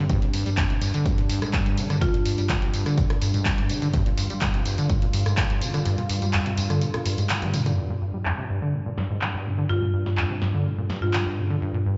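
Played through a big sound system in a bare room, this trippy, raw acid house excerpt sits in a lush hall reverb with a dulled top end. At 125 BPM in straight 4/4 and G phrygian, a squelchy, resonant sawtooth acid bass riff with a gritty, sampled edge runs beneath a smooth, warbling analog pad of sustained chords that pumps against the beat. A punchy electronic kick sits up front until 5.5 seconds, while a punchy analog drum machine supplies handclaps, hi-hat, rim click, snare, tambourine and toms, with a short room on the snare, clap and hats. A drum fill leads into a new section at 7.8 seconds, where filter sweeps move across the drums and the pad. A woody marimba struck with hard mallets adds brief, echoing notes on F4, first near 2.0 seconds and again toward the end.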